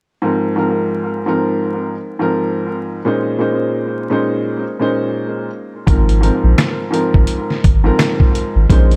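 Dark and moody, this boom-bap hip-hop excerpt at 85 BPM, swung on the 16ths, opens at 0.2 seconds with a mellow, boxy baby grand piano, intimate with audible action noise and colored by cassette tape and analog delay as it moves from Ab69 to Bbm11 and back, until at 5.9 seconds a round, soft dub sub bass and a gritty, pitched-down sampler-style drum kit of thumpy kick, medium-tuned snare, handclaps and hi-hat arrive up front in a dry, echo-heavy mix dusted with vinyl crackle.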